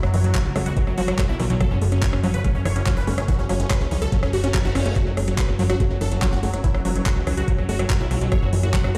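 Psychedelic trance at 143 BPM in a straight 4/4, hypnotic and alien, cut from a longer piece: a knocking, tape-warm electronic kick and a fat, detuned analog bass with tube saturation sit up front under a punchy, bright supersaw stab melody with phaser, sidechain pumping and dub echo, while a squelchy, gritty acid bass riff with distortion enters at 0.1 seconds, a pulsing gated texture of chorused, reverberant sustained chords hovers in the background, a garage drum kit adds handclaps, rim clicks and metallic hats, and a very quiet reverse cymbal enters at 4.4 seconds.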